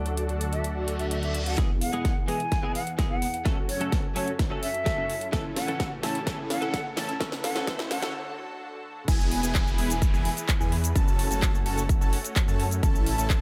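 A punchy, layered electronic kick sits up front from 1.6 s in this emotional, anthemic festival progressive house excerpt, locking in with a big-room dance kit that has been playing since 0.1 s with a huge snare, metallic hats, handclaps, shaker and crash, while a huge, thick supersaw riff with vibrato pumps through a filter sweep over a lush, bright unison pad and a clean, direct-recorded electric guitar in the background. An airy, expressive jazz flute with vintage 12-bit grit and dub echo carries the melody through the build-up, as a reverse cymbal, riser and downlifter add tension before a short break at 8.1 s. At 9.1 s the drop arrives with the return of a menacing, beating detuned saw bass and a bold, nasal unison lead playing arpeggios, all set in light reverb.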